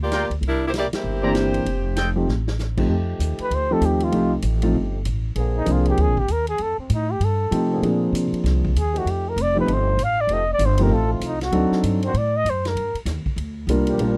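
Joyful and swinging, this big band jazz excerpt in F mixolydian moves at 194 BPM. It opens with an edgy saxophone section melody and clear, vibrato-laden trumpet section stabs over woody pizzicato upright bass and a punchy, natural big-band drum kit, with a band accent at 0.9 s and a short drum fill just after the horns stop at 2.1 s. From 2.9 s a dark, breathy solo trumpet takes the lead with scooped, whispered notes, backed by intimate concert grand piano with audible action noise and distant, mellow trombone section chords through Bb9, F9 and D7b9, all captured in a dry, close 1970s-style studio sound.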